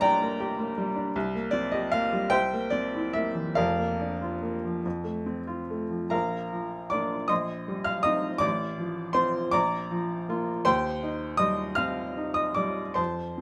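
A clear, woody upright piano plays alone and up front, spanning F1 to F6 in this passionate yet hopeful romantic character piece in 6/8, moving freely with rubato at roughly 46-55 BPM in dotted quarters and tuned to A4 = 435 Hz. The harmony opens on G minor and passes through C7 and Bb/F to F, then shifts into a second section at 6.1 s that circles through Bb, Cm7/Bb and F/A before landing on Cm/Eb. A moderate small-room reverb keeps the sound natural across these 13.4 seconds, cut from a longer work.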